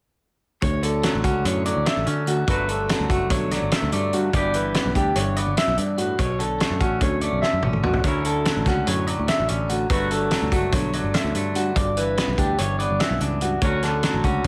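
Math rock and midwest emo in a straight 9/8 at 291 BPM counted in eighths, this playful, wistful passage sits in D major and is cut from a longer piece. A clean, fingered, twangy electric guitar carries the accompaniment through lush extended chords, moving from Dmaj7 through Gmaj9, Em7/G and Bm9 before circling back to Dmaj9 and resolving on Dmaj7 near 13.6 seconds. Above it, a second electric guitar through a small old amp spins bright, slightly broken-up picked arpeggios bathed in spring reverb. A foam-muted picked bass adds a punchy, warm low end, while a loose indie drum kit sits up front with a fat snare, punchy kick, hi-hat and toms, its gritty, saturated tone rolled off at the top. The drums break into a fill from 7.4 to 8.0 seconds, and a moderate studio reverb gives the whole band a snug room around it.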